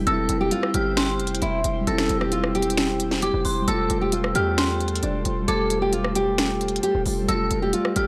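A fingerpicked nylon-string guitar carries the melody in this eerie, hard-hitting trap excerpt, its fresh strings sounding full-bodied and classical through a tape echo. Beneath it, a distorted 808-style bass hits with a saturated, aggressive weight and a fast attack that decays, while an up-front electronic drum kit in a half-time feel supplies a sharp snare, crisp hi-hats, rim clicks and finger snaps. A dark, detuned FM synth bell adds a high second line whose inharmonic, decaying tones are colored by chorus, phaser and tape echo. A mellow, clean tine electric piano plays accompaniment, and an airy, breathy pad with a slow attack and long release sustains chords softly in the background under its own chorus. The harmony moves from C/E to Fadd9 at 3.7 seconds, all set in a dry, gritty hardware recording with a digital ambience.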